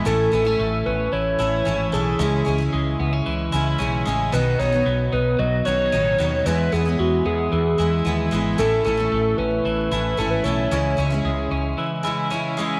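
Youthful and bright, this indie pop excerpt moves at 113 BPM in a straight 4/4 and cycles through A, C#m, B and E. A picked twelve-string acoustic guitar sits up front with a shimmering, octave-doubled, full-bodied jumbo tone, while a clean, compressed twelve-string electric guitar plays arpeggios with a vibrato effect; both guitars run the full 12.8 seconds. The melody comes from a warbling, nostalgic synth lead built from detuned square, sawtooth and triangle waves with a sub octave, a fast attack and sustained notes, dressed in chorus, vibrato and tape echo, and it carries the tune until it stops at 11.5 seconds. Underneath, a woody fretless electric bass gives a round, hollow-body sound that is direct and amped. Light reverb and digital ambience frame the mix, and a layer of vinyl crackle runs through it.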